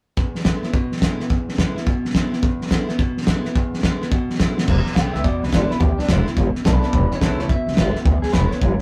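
A picked steel-string acoustic guitar with a full-bodied dreadnought tone and audible finger squeak opens this rowdy, upbeat rockabilly fragment at 213 BPM, swung in 4/4 around E7 in E mixolydian. Alongside it, a cloth-damped, thuddy drum kit sits up front with dark cymbals, a fat snare and a tight kick, its rolled-off top giving the crash and hi-hat a muted edge. A drum fill at 4.5 seconds leads into the second section, where a pizzicato upright bass on gut strings arrives at 4.7 seconds, woody and thumpy in the low register. At 5.0 seconds a twangy, slightly broken-up electric guitar through a small old amp takes the melody with a bright, picked sound. The whole track has the rough, saturated feel of a rehearsal-room recording in a small room with moderate reverb, and it is cut from a longer piece.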